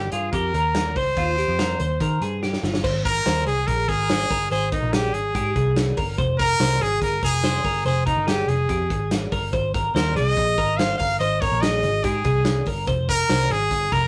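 Jangly indie pop at 143 BPM in Ab major, breezy and youthful, with a brilliant, up-front trumpet carrying the melody over twangy, vibrato-tinged twelve-string electric guitar arpeggios, a dark, foam-muted picked electric bass, and a distant, roomy drum kit with a punchy kick whose fill at 2.4 seconds leads into a section moving from Abadd9 to Fm, all in a rough rehearsal-room recording with moderate reverb.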